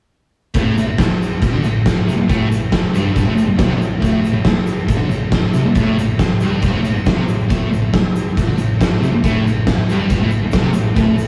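A thick, double-tracked fuzz guitar and an oversized, low-tuned drum kit crash in together at 0.5 seconds, the picked electric riff sitting dark and distorted in the low register while the kit hits with a punchy kick, fat snare and crash cymbal, all gritty and saturated with a rolled-off top. This menacing, raw slice of garage rock is cut from a longer piece and moves in a straight 4/4, with a grainy tube shaker sitting distant in the background of a large room. The rough rehearsal-room recording wraps the drums in a bright stone room reverb, keeping both guitar and kit up front.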